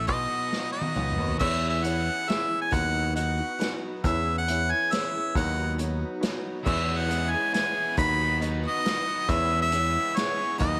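Hopeful and open-road in feel, this short folk rock and heartland rock excerpt moves at 137 BPM in a straight 3/4 in E major, with a clear, up-front harmonica carrying the melody using light vibrato and scooped notes over a round, punchy electric bass and a roomy, distant acoustic drum kit played with bundle sticks. A bright, picked steel-string acoustic guitar with audible finger squeak sits in the background, while a double-tracked overdriven stack guitar riffs at the start, drops out at 1.4 seconds after a drum fill, and returns at 6.6 seconds. From 1.4 seconds a dark baby grand piano with long sustain and a very quiet, flute-like tonewheel organ through a rotary speaker fill in the harmony as the chords alternate between E6 and B/D#, all under a light reverb.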